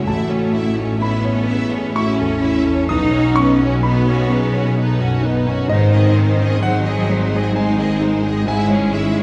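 Cinematic, emotional film score for orchestra in a slow, rubato 3/4 at 64 BPM, its longing, bittersweet mood carried by a lush, expressive violin melody over a smooth second violin line and close violas in the background, a focused cello section and double basses anchoring the bass, a concert grand piano with deep bass accompaniment, dark, distant French horns holding soft-attack chords, and a very quiet, ringing harp in arpeggios, all running together through this 9.2-second passage cut from a longer piece, bathed in the reverb of a concert hall as the chords move from A through Badd9 and G# to C#m/G#.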